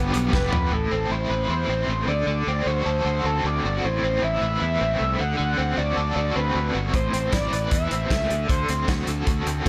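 A gritty, screaming synth lead opens this moody, cool indie rock excerpt in A dorian at 154 BPM in a straight 4/4, sounding over a double-tracked, picked guitar riff and a round, punchy fuzz bass, all up front. The loose indie drum kit comes in at 0.1 seconds, and a short fill from 0.3 seconds hands off to the main section at 0.7 seconds. The drums then drop away and return at 6.9 seconds, a small-room acoustic kit with a tight kick, medium-tuned snare, hi-hat and toms, its top rolled off. The sawtooth-and-pulse lead is bright and guitar-like, with a fast attack, sustained notes and vibrato, carried by distortion, chorus, slapback echo and plate reverb. The guitar's overdrive is shaded with tremolo and the bass adds overdrive to its warm fuzz, as the harmony moves between Amadd9 and D7 after an opening G7, all within a light reverb.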